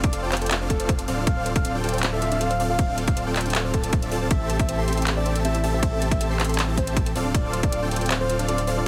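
A saturated sub bass and a hard-clipped, tape-warm electronic kick sit up front in this emotional, bittersweet half-time future bass passage, joined by a huge detuned supersaw riff, a mellow wave-folded synth lead melody with chorus and delay, dark nasal pluck arpeggios in the background, and a trap kit of handclaps, metallic hi-hats and ride cymbal; sidechain pumping moves the bass, supersaw, lead and pluck through a heavily compressed, radio-like mix with little reverb, and the kick drops out at 7.7 seconds.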